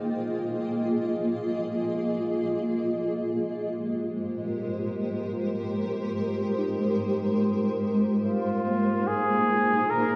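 Floating in free time in Ab major, this luminous, weightless ambient fragment opens on a cloudy, slowly evolving granular pad holding an Abmaj9 chord up front, its blurred, mellow tone carrying its own built-in reverb. From 1.6 seconds, very quiet muted synth keys with a dark, warbling chorus trace soft arpeggios in the background. At 8.2 seconds a warm flugelhorn with light vibrato steps forward with a short solo melody, all set in a vast, echoing cathedral-like space.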